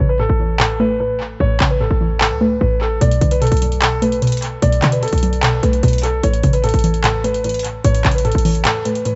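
A half-time 4/4 trap pulse at 149 BPM, tuned to A4 = 444 Hz, drives this brooding, eerie hip hop excerpt, where a dark, mellow concert grand piano carries the melody up front through a low-pass filter and tape echo over a warbly, detuned, lo-fi pluck in a chorus-soaked accompaniment, a punchy, tight 808-style bass that drops away at 8.7 s, and an electronic trap kit of metallic hi-hats and handclaps arriving at 0.6 s with its own tape echo, as the harmony moves from A to Bm7 and back to A in a dry, echo-heavy mix.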